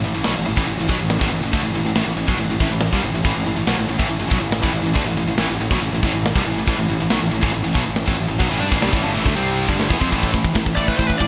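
This dark, epic heavy metal excerpt opens with three distorted electric guitars playing riffs together: one overdriven and picked, a very quiet double-tracked one reaching a little higher, and a tight, distorted one sitting in the background. A growly, fuzz-laden fingered bass joins them from the start, its overdriven tone coming through direct and amped beneath the guitars. The drum kit enters at 0.2 seconds and sits up front, with a tight kick, a medium-tuned snare and bright crash cymbals treated with gated reverb in an airy, polished big-room sound. A drum fill at 9.7 seconds leads into a new section, where a high-gain lead guitar steps forward at 10.8 seconds with a brief, bright solo line. The whole mix carries a moderate, lush hall reverb and a bright 1980s-style digital production, set in a straight groove that stays on A minor throughout.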